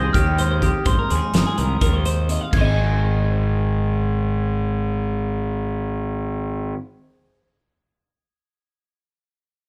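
Lightly reverberant and captured as a band playing live in one room, this wistful, intricate math rock and midwest emo excerpt in Ab major moves at 251 BPM in 7/8, with a mellow, bell-like glockenspiel played with rubber mallets carrying the melody over a bright, twangy, compressed twelve-string electric guitar accompaniment, a very quiet second twelve-string weaving clean picked arpeggios, and an up-front, overdriven fuzz bass, while a loose acoustic drum kit with a punchy kick, fat snare, dark cymbals and a pumping room sound plays only until 2.6 seconds, just as the harmony shifts from Abmaj7 to Ab at 2.5 seconds.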